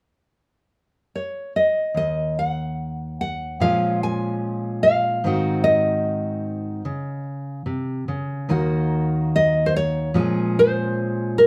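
A warm nylon-string guitar carries the fingerpicked melody from 1.2 s, its deep classical tone sitting up front in this heartbroken, reflective folk fragment cut from a longer piece. At 1.9 s a dark, full-bodied dreadnought steel-string acoustic guitar joins with fingerpicked accompaniment, a finger squeak audible as the harmony moves through Bbm7 and Ab7, then to Ebm and back to Bbm7. A moderate studio reverb gives the two guitars a gentle sense of space.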